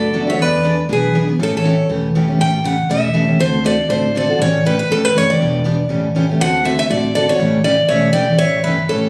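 A playful, lively burst of gypsy-jazz string swing at 240 BPM in A mixolydian opens with a boxy, parlour-sized steel-string guitar carrying the melody up front in a touch of plate reverb, alongside an airy, vibrato-laden flute line that plays until 1.9 seconds and returns at 7.9 seconds. Underneath, a full-bodied jumbo guitar picks the accompaniment with audible finger squeak through seventh-chord changes, while a woody, thumpy gut-string upright bass sits low in the mix. The phone-in-the-room recording carries moderate studio reverb, and this short excerpt is cut from a longer piece.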